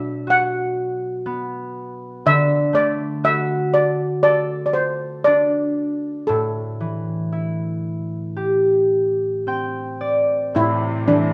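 A mournful, longing Celtic slow air, taken at a free, rubato pace and cut from a longer piece. A steel pan carries the melody up front, its metallic shimmer softened into something mellow and airy by soft rubber sticks and played in double seconds. A concert harp accompanies throughout, fingerpicked and ringing, its acoustic tone sitting close alongside the pan and adding a fill from 8.9 to 10.6 seconds. The harmony moves through Bm, D and Am7, and at 10.6 seconds a symphonic string section enters low with clear, smooth, bowed chords touched by light vibrato, intense for its brief appearance. A moderate recital hall reverb gives the whole a gentle sense of space.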